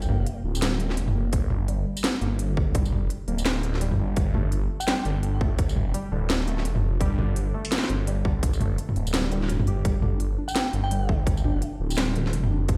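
A swung, half-time drum and bass groove drives this dark, tense passage, cut from a longer piece, with an up-front drum kit of cracking snare, crisp hats, tambourine and toms that carries a roomy, re-recorded edge. A tight, overdriven electronic kick joins at 1.3 seconds and sits at the front of the mix. Underneath, a thick, swirling detuned saw bass holds low and sustained, its saturated tone churning through a phaser. A warbling, dusty pluck spins arpeggios throughout, lo-fi and evolving, its filter-swept tone smeared by analog chorus and tape echo. Twice, near 4.8 seconds and again at 10.5 seconds, a glassy FM bell rings out high and brief, mellow and dressed in chorus, 12-bit sampler grit and digital delay. The whole mix plays as if through a big sound system in a bare room, wrapped in a large studio reverb as the chords move from G minor to open power chords.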